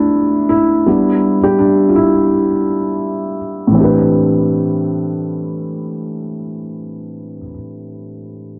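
A felt-muted upright piano opens alone, soft and intimate, with audible action noise, cassette-tape coloring and a filter sweep through the first 3.8 seconds. It moves from G13 to Em7 before settling on Am11 in A minor. This melancholic, hazy hip hop fragment sits at 83 BPM with a 60 percent swing on the sixteenths. The mellow piano stays up front in a dark production with light digital reverb until it stops at 8.6 seconds.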